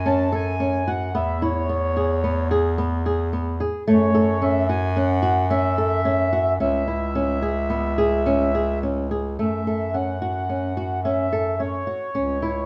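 Contemporary chamber music in an uneven 5/4 meter, this restless, hypnotic piece moves at 109 BPM with a straight feel in F# minor, cycling through F#m, E, F#m7 and C#m over a dark production with light reverb. A mellow, reedy accordion with slow beating carries the melody up front, while a clear bass clarinet in classical style holds the low register and an acoustic flamenco guitar plays thumb-plucked arpeggios, its finger squeaks audible. All three parts run from start to finish of this section cut from a longer work, shifting into a new section at 9.4 seconds.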